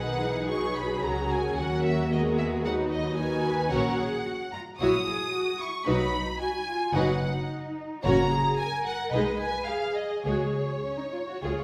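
Rubato yet quick at 111 BPM in 4/4, this lively, spirited classical-period passage for string orchestra, cut from a longer piece, sets a lush, vibrato-rich symphonic violin section up front on the melody over smooth, even second violins, focused violas, a soft-attacked cello section with expressive portamento, and a close, up-front double bass section, all in a wet recital hall heard from further back as the harmony moves from B major toward F# major at 3.7 s and reaches C#sus4 at 10.2 s.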